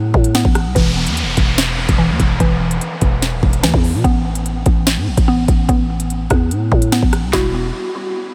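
A half-time drill groove at 146 BPM drives this tense, cold hip hop cut from a longer piece, with an electronic kit of knocking kick, sharp snare, crisp hats, handclaps and rim clicks sitting up front beside a growling, buzzy 808-style bass. A woody, round mallet-like synth pluck plays arpeggios through chorus, phaser and tape echo, moving from Amadd9 to E5 and Asus2 before landing on Emadd9, while an electronic downlifter sweeps through between 0.8 and 4.0 seconds. A huge ambient reverb soaks the mix in a dreamy haze.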